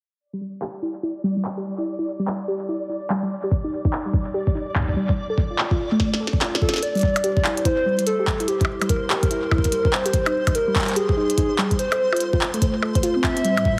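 A swung 145 BPM IDM groove in 4/4 drives this eerie, glitchy fragment, where a dark, ringing harp-like synth pluck spins arpeggios through a filter sweep until 6.8 seconds, a glitchy kit of tiny snare, clicky hats, handclaps and percussion blips sits up front, a gritty overdriven electronic kick thumps in at 3.5 seconds, a warbling, nostalgic lead with vibrato carries the melody from 6.6 seconds over Am7, G#maj7 and F, a flickering grainy texture hovers quietly, and a swirling phased analog pad surfaces only at the close, all through echo-chamber reverb and a heavily compressed, filtered radio sound.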